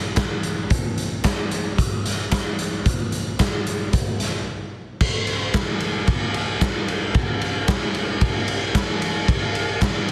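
Rock at 112 BPM in a straight 4/4, carefree and upbeat, this short fragment is carried by a raw garage drum kit placed up front, its punchy kick, medium-tuned snare, hi-hat, ride and crash sounding dark and smooth with a rolled-off top in a bright stone room. Group handclaps sit in the background with a hollow, saturated, compressed character. A brief break at 4.5 seconds leads into a new section at 5.0 seconds, all held in studio reverb and a dense, heavily limited modern master.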